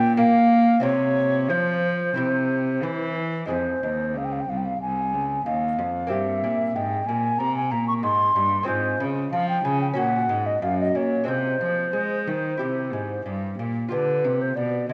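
Grave and flowing, this baroque-style sonata movement with continuo unfolds in F minor at 92 BPM in a straight 4/4, heard as a passage cut from a longer piece. A mellow baroque flute carries the melody across a range spanning B4 to Db6, its pure wooden tone touched with vibrato, a crisp attack and rolled-off highs, placed up front. Beneath it a rich cello plays the bass line, one bowed player with a reedy gut-string tone in period style, also sitting forward. A lute fills in the accompaniment more softly, fingerpicked and delicate, its bright double strings partly doubled at the octave. All three parts play together throughout the 14.9 seconds, with the harmony moving from Bbm through C and Fm, reaching a Gb chord at 10.0 seconds before closing on G7 at 13.9 seconds. A moderate concert hall reverb lends the ensemble a spacious, lingering air.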